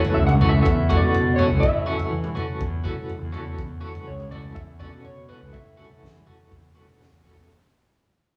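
Psychedelic rock at 123 BPM in a straight 4/4, this short excerpt cut from a longer piece has a trippy, kaleidoscopic mood, sitting on an F#m7 chord as the whole passage fades out. A clean, compressed twelve-string electric guitar plays a picked riff between E3 and F#4 with tremolo, while a crunchy breakbeat drum kit of kick, snare and toms sounds dark and smooth, with a high-tuned snare, a tight kick and a rolled-off top. An electric slide guitar carries the melody from 0.1 to 7.0 seconds, slightly broken-up and fingered in the B4 to F#5 range, with slapback echo. A round, up-front fingered bass with fuzz and overdrive holds the low end between C#2 and E3, and is the loudest part. The band plays live in one room under a wet large studio reverb, and a drum fill arrives at 7.2 seconds.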